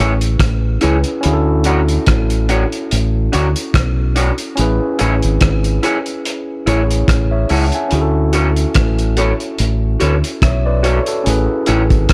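A lightly swung 4/4 groove at 72 BPM carries this sweet, tender lovers rock reggae passage, with a round, punchy fingered electric bass sitting up front beside a muffled, cloth-damped thuddy drum kit whose tight kick, hi-hat and rim click arrive at 0.2 s steeped in dub echo, while a barky, overdriven tine electric piano with tube saturation and dark, slightly broken-up lo-fi guitar stabs through a small old amp with lush chorus move between Amaj7 and Dmaj7, tuned to A4 = 441 Hz.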